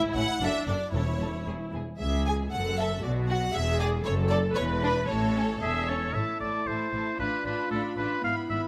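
Quick, cheerful classical-period orchestral music in a spirited, rubato 2/4 opens with a rich, even viola section under a clear violin second line and a lush, distant violin melody with portamento, over a focused cello and double bass foundation, while hard-mallet timpani strike briefly near 0.9 seconds before a bright, up-front solo oboe enters at 5.6 seconds and a mellow French horn section adds sustained chords from 6.2 seconds, all in a close, detailed studio sound with light reverb.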